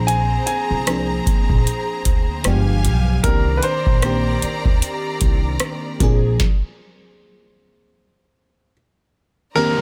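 Contemporary R&B with a longing, late-night mood and a swung feel, where a clear baby grand piano carries the melody through a delay over a dreamy FM electric piano with chorus, phaser and a soft pad layer, bowed studio strings hold lush chords, and a woody pizzicato upright bass and a booming analog drum machine drive the groove until the rhythm drops out at 6.4 seconds, leaving the keys and strings to drift before a downlifter closes this fragment of a longer piece.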